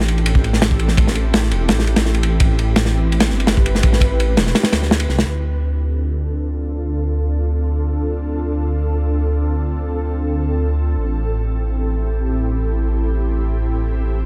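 Nostalgic and raw, this cut from a longer drum and bass track moves at 168 BPM in D dorian, its jungle roots showing in a crunchy breakbeat kit of punchy kick, medium-tuned snare and dark ride cymbal that sits up front with a gritty, saturated edge and a rolled-off top. The kit plays only through the opening 5.3 seconds, and its kick drops out from 4.5 seconds just before the harmony shifts. Underneath, a dark detuned saw bass rumbles deep and up front, its unison voices beating against each other through tube saturation as it sustains across the whole passage. Above it, an ethereal, airy pad holds sustained chords with a slow attack and long release, softened by ensemble chorus and built-in reverb, sitting low in the mix. Once the drums fall away, a filter sweep runs across the pad as the chords move from Am7 to Dm7 and back to Am7 at 11.0 seconds, leaving a mellow, suspended haze in a light, small-room space.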